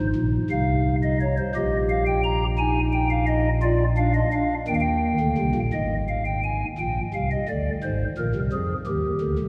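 Classical baroque-style three-voice fugue in Ab major and 6/8, driving yet solemn at 57 BPM in dotted quarters, played solo on a pipe organ's stopped flute stops, whose soft, hollow, mellow tone with a touch of chiff sits up front across a range from Ab1 to Bb5 and blooms into a long, wet cathedral reverb, with a new section arriving at 5.7 s before this short fragment of a longer piece ends on Eb at 8.9 s.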